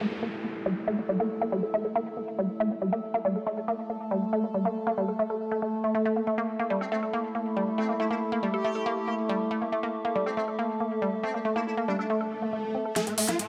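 A woody, wave-folded pluck sits up front through this 13.5-second excerpt of psychedelic trance at 139 BPM in straight 4/4, tuned to A4 = 438 Hz, playing a percussive, evolving riff colored by chorus, cassette tape and tape echo while a filter sweep runs over the synth arpeggio until 13.0 seconds. Beneath it, a resonant, overtone-sweeping drone holds sustained chords on an A5 chord, and a warbly, nostalgic tape-like pad adds a mellow lo-fi texture in the background, both bathed in chorus and built-in reverb. A metallic, wobbling FM bass carries a saturated second line from 6.8 to 12.1 seconds, thinned by a high-pass filter and trailed by tape echo. Electronic downlifter, swell and riser effects frame the passage, with a swell building from 12.3 seconds before a swarming, aggressive rave lead and a big-room drum kit with a huge overdriven snare and metallic hats burst in for a drum fill at 13.0 seconds. 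The mood is alien and psychedelic, set in a lush digital hall reverb.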